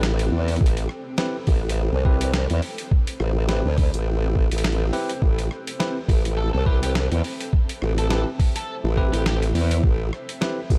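An up-front, saturated formant-sweep wobble bass with chorus and a tape-colored, pitched-down boom bap kit of hi-hat, rim click and snare open this funky, gritty glitch hop excerpt in A minor at 104 BPM with a 16th-note swing. They are joined by a dark granular cloud pad pumping in the background, a thumpy electronic kick arriving at 0.6 seconds, bell-like tine electric piano stabs with analog delay from 1.2 seconds, and a distant fuzz-drenched lead guitar surfacing at 6.4 seconds, all resting on a single Am9 chord in a dry room.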